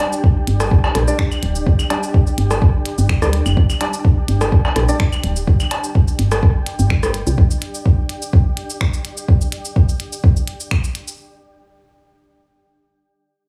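A small, lightly reverberant room frames this clinical, sparse minimal techno excerpt, a drop cut from a longer piece with a gentle swing on the sixteenths. A soft, tape-warm kick sits up front beside a round, dark FM bass with a woody tone and sidechain pumping, while a clicky kit of cabasa, finger snaps and hi-hat plays alongside overdriven analog cowbell, rim click and claves carrying dub echo. In the background, hollow organ stabs with lush chorus and dub echo stop at 5.0 seconds, and a blurred, detuned granular pad hovers with its own reverb and pumping until 9.3 seconds.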